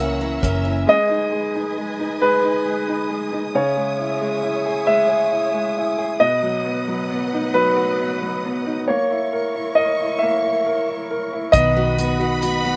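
A dark, mellow concert grand piano carries the melody with a slapback echo through this dramatic, melancholic six-eight pop ballad in G# minor at 45 BPM, over a woody upright piano accompaniment with the same echo and lush, distant bowed strings holding sustained chords, while a focused violin section second line, full-bodied picked acoustic guitar arpeggios, round foam-muted electric bass and a dry 70s drum kit with tight kick and hi-hat appear only briefly at the opening and return at 11.5 seconds in this dry excerpt.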